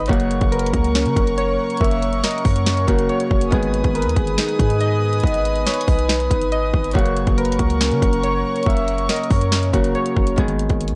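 Up front, a trap drum kit with a hard-clipped kick, sharp snare and bright hats, roughened by vintage 12-bit sampler grit, drives this menacing, eerie half-time trap cut at 140 BPM over a deep, boomy 808-style bass. A fingerpicked, ringing Celtic harp accompanies warbling, detuned lo-fi synth keys whose arpeggios carry chorus and tape echo. A breathy, flute-like synth lead with the same effects plays a second line against dark, sul tasto string chords, while the harmony moves between F# and G#m in a dry, gritty, cassette-tinged sound.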